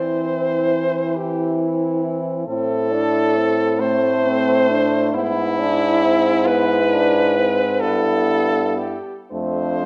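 Elegiac and yearning, this brief excerpt from a longer classical piece sets a horn quartet in A minor, moving in a slow, rubato 6/8 at 45 BPM in dotted quarters. A clear French horn carries the melody up front with vibrato, singing between E4 and C5, while a mellow second horn beneath it traces a soft-attacked line from C4 to E4 with light vibrato. Two more horns, each warm with light vibrato and a distant, roomy presence, fill out the harmony: one holds the accompaniment between A3 and D4, and the other anchors the bass from F2 to E3, sitting up front despite its roomy character. All four parts sound together for the full 9.9 seconds, passing through C/E, Am, E/G#, and Em/G before settling on F6 at 9.3 seconds. A moderate recital hall reverb surrounds the ensemble, and the sound carries the worn, warbling character of old cassette tape, with a warbly pitch drift.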